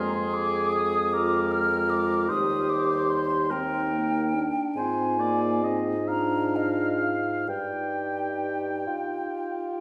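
In a rubato 6/8 at roughly 41-52 BPM, counted in dotted quarters, this slow, lyrical and tender romantic movement for wind quintet in Eb major is cut from a longer piece. A hollow, airy silver flute with vibrato carries the melody between Eb5 and F6, and a smooth-topped oboe sings a second line until 9.6 s. The clear, soft-attacked clarinet sits in the background and a vintage-toned French horn adds accompaniment, while a mellow bassoon holds the bass up front. The quintet is heard from further back in a wet recital hall as the harmony moves through Fm/Ab and Bb7/Ab to Eb/G.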